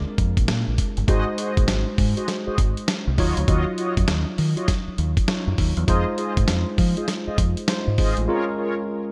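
A clean tine electric piano heard through its built-in speakers and a dark, round fingered dub bass open this confident, slick R&B new jack swing excerpt together in Eb dorian at 100 BPM with a 16th-note swing, then a gritty, compressed sampler-style drum kit sits up front from 0.2 seconds with a thumpy kick, a medium-tuned snare, hi-hat and gated reverb, and nasal, brassy synth stabs with chorus and vibrato arrive at 1.1 seconds, all set in light reverb and bright 1980s-style digital production.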